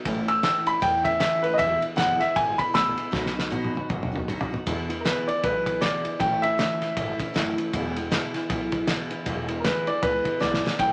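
Upbeat and rollicking, this swung rockabilly cut, lifted from a longer piece, bounces along in 4/4 with a loose shuffle in its eighth notes. An upright piano carries the melody up front, its tone woody, intimate and polished, with long sustain and audible action noise, and it takes a solo through the opening until 4.7 s. Beneath it, a picked steel-string acoustic guitar picks out a full-bodied accompaniment. A plucked upright bass with gut strings adds a thumpy, dark low end. The cloth-damped drum kit sounds muffled and gritty, with a fat snare, tight kick and dusky ride cymbal, and it rolls through a fill from 3.1 s into the second section and another at 10.4 s. The chords move among E, A and B, and a moderate studio reverb gives the whole band a modest sense of space.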